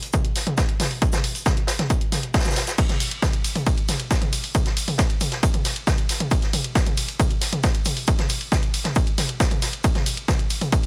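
A straight 4/4 pulse drives this industrial, relentless techno excerpt, cut from a longer piece and built entirely from drums. An electronic kick sits loudest and up front, a layered, punchy hit with a tape-saturated body that was re-recorded in a small room, entering at 0.1 seconds. Around it, a punchy analog drum machine supplies crash cymbal, hi-hat, ride cymbal and toms, also placed forward in the mix and carrying the air of a large room. Further back, a vintage acoustic kit adds hi-hat, shaker and a medium-tuned snare with a natural studio-room character and a rolled-off top. Its hats and percussion pump against the sidechain, while high-pass filters thin its hats, snare, percussion and room sound. The whole excerpt holds to a single section with little reverb, ending at 10.9 seconds.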